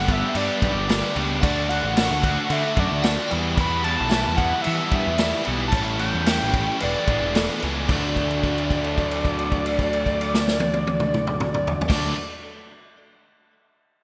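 A straight 4/4 pulse at 111 BPM drives this wistful, jangly indie rock passage in D major, cut from a longer piece, with a vintage acoustic drum kit up front, its punchy kick, medium-tuned snare, crashes and toms wrapped in gated reverb. A fuzz-drenched picked electric bass, punchy and overdriven, anchors the low end, while two overdriven guitars play riffs: one biting and warm, the other crunchier and brighter, sitting in the background under a subtle chorus. Over them, a gritty, screaming synth lead with a guitar-like, saturated sawtooth tone and vibrato carries the melody through a digital delay. A delicate, tinkling FM tine bell traces a second line behind it through chorus, phaser and delay, and a very quiet, silky string machine holds dark sustained chords. The chords move from G through D, Em, A7 and E7sus4 before returning to D at 7.9 seconds, where a new section opens with a note held until 11.9 seconds. 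The whole mix has a bright 1980s-style digital sheen and a lush hall reverb.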